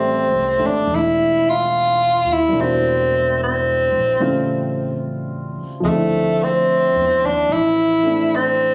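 Intimate and wistful, this slow 73 BPM jazz ballad in D minor swings gently in 4/4 as a breathy, up-front tenor saxophone sings the melody with vibrato, subtone and scooped notes over a concert grand piano with deep bass and a woody pizzicato upright bass, moving from Am7 through Em7b5 and A7alt to Dm9 in a short phone-captured snippet with the ambience of a club.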